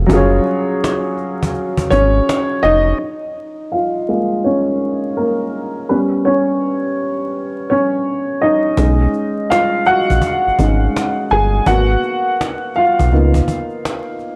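A swung 4/4 groove carries this nostalgic, dreamy lo-fi hip hop excerpt, where a dark, woody upright piano with audible action noise, slight detuning, cassette-tape coloring and a low-pass filter plays up front throughout, taking a solo under a filter sweep from 3.0 s as the round, transformer-saturated analog bass and snappy cajon drop out, before both return at 8.8 s, all in light studio reverb over a gritty hardware sound with vinyl crackle.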